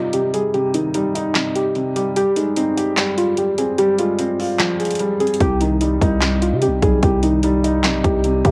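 A half-time trap groove at 148 BPM in C minor drives this brooding, hard-hitting hip hop excerpt, with an up-front electronic kit of hard-clipped kick, sharp snare, metallic hi-hats and handclaps carrying a cassette tape grit. Muted, felt-like synth keys carry a soft, intimate melody through chorus, analog delay and a low-pass filter over a dark, mellow baby grand whose action noise and short sustain sit close in the mix, moving from Cm to Fmadd9. At 5.4 seconds the break ends as a growling, buzzy 808-style bass enters, returning the harmony to Cm, all within a lightly reverberant home cassette sound.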